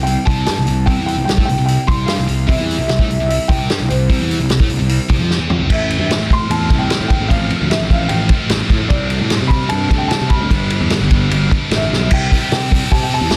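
Carefree yet wistful, this short indie rock excerpt moves from C through Am7, F/A, Csus2 and G before landing on C6 at 12.1 seconds. A bright, scooped high-gain guitar with distortion and a very quiet, overdriven semi-hollow guitar that drops out at 12.1 seconds play riffs over a fuzzy, overdriven picked electric bass and an up-front vintage drum kit with dark cymbals, a tight kick and a rolled-off top, which marks the changes with fills at 5.3 and 11.9 seconds. Above them, a dark, woody, slightly detuned upright piano carries the melody through digital delay, all set in light reverb under a dense, heavily limited modern master.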